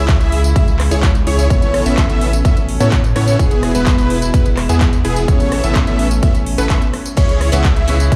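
Festival progressive house at 127 BPM in A major, uplifting and anthemic, built on a huge, detuned supersaw riff and a bold, mellow unison lead playing arpeggios, both with delay and sidechain pumping, over a saturated sine sub bass and dark, reedy chamber strings sustaining chords in the background, moving through C#m, Aadd9 and E. A punchy, up-front electronic kick and a layered big-room kit with metallic hats, handclaps, rim clicks, tambourine and crash drive the track from 0.1 seconds. A brilliant, boxy picked acoustic guitar with a swing feel joins at 7.2 seconds, and the whole mix sits in light digital ambience, heard as if on a big sound system in a bare stone room.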